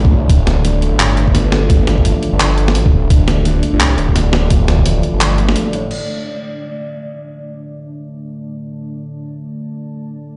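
A tense, spacious half-time drum and bass drop opens with a swirling, saturated phased saw bass up front, a thumpy compressed kick, a soft felt-muted upright piano playing arpeggios with audible action noise, 12-bit sampler grit and digital delay, and a deep, moody ambient pad sustaining chorused chords in the background, while a gritty boom bap sampler kit with a high-tuned snare, hi-hat, handclaps and crash joins at 0.3 seconds, and after a brief break the pad carries on alone from 6.0 seconds, the whole mix sounding as if played through a big system in a large, bare room with a dull top end.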